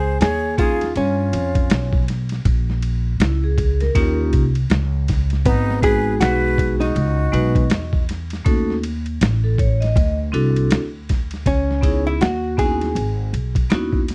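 Jazz-hop in a cool, mellow mood, this 80 BPM cut from a longer piece rides a swung 4/4 groove on a gritty, compressed boom bap sampler-style kit that is pitched down, with a thumpy kick, a medium-tuned snare, hi-hat and ride cymbal, all tape-warm and re-recorded in a small room. Underneath, a woody, dark upright bass is plucked pizzicato on steel strings and sits up front beside the drums. A clean, picked hollow-body electric guitar carries the melody in a compressed tone, while a breathy metal flute with a straight tone, soft attack and lifted highs sings an expressive second line until it drops out at 8.0 seconds. From 0.6 seconds a bright, ringing vibraphone struck with hard mallets, motor off, adds metallic accompaniment over a progression that moves from C#add9 through A#m7b5, D#7, G#m7 and D#m7b5 to D9. At 11.5 seconds the harmony shifts to C#m9 for a new section, and the whole take has a dry, close, 1970s studio sound with little reverb.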